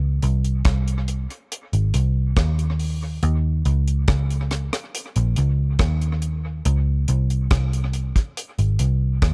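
Bittersweet and longing, this short lovers rock reggae excerpt moves at an unhurried 70 BPM in a straight 4/4, built from just bass and drums in a dry, close-sounding space. A vintage muted picked electric bass carries the low end from the start, its dark, round, punchy tone sitting up front in a deep register. A deep reggae drum kit joins at 0.2 seconds with hi-hat, a tight kick and rim clicks, their dry acoustic sound trailed by dub echo.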